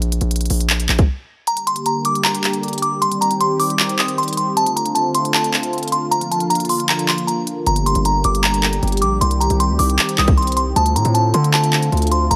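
A half-time trap groove at 155 BPM in 4/4 drives this brooding, hard-hitting hip hop excerpt in G minor, built on an electronic, up-front drum kit of handclaps, crisp hi-hats and a hard-clipped kick. The punchy, heavy 808-style bass, a sine tone with a noise layer and a fast, decaying attack, sounds in the opening break, then drops out until 7.7 seconds, when it returns along with the kick, which is muted from 1.5 seconds until then. At 1.5 seconds a delicate, tinkling FM tine bell takes the melody high up, its vintage, warbling tone colored by chorus, a low-pass filter and tape echo. Beneath it, a sweeping resonant pad of detuned sawtooth waves with a slow attack and filter swell holds evolving, chorused chords. The harmony cycles through Gm, Cm, Dm7 and Bb under a light reverb.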